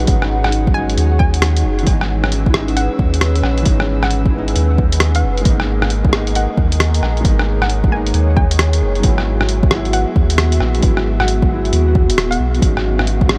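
An overdriven, deep electronic kick, re-recorded in a large room, anchors this nocturnal, wistful future garage excerpt at 134 BPM in G# minor, swung on the 16ths, while a muffled lo-fi sampler-style kit adds hi-hat and rim click. A round sine sub bass with tube saturation sits up front, and a detuned, warbling tape-like pad with chorus, phaser and reverb holds sustained chords moving from C#m7 to G#madd9 and Eadd9 over a G# pedal; both breathe with sidechain pumping. A felt-muted upright piano with 12-bit grit and tape echo plays soft, intimate accompaniment, and a hollow, nasal square pluck with chorus and tape echo adds a bouncy melody in the background from 0.4 to 12.7 seconds.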